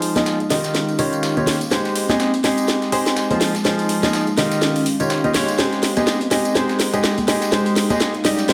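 A clear, polished baby grand piano riff leads this joyful piano house excerpt at 124 BPM in Ab major with a swung 16th feel. It sits up front through a low-pass filter sweep and digital delay over Fm7, Eb9 and Abmaj7 chords, as a layered electronic house kit with a cracking snare and metallic hats drives a build-up and drum fill. A gritty, compressed breakbeat sampler-style kit adds hi-hat, snare and tambourine in the background, a dark, warbling, nostalgic, lo-fi sawtooth pad sustains with chorus and built-in reverb, and ringing acoustic congas and tambourine enter at 0.2 seconds, all inside a lush hall reverb with a faint mains hum.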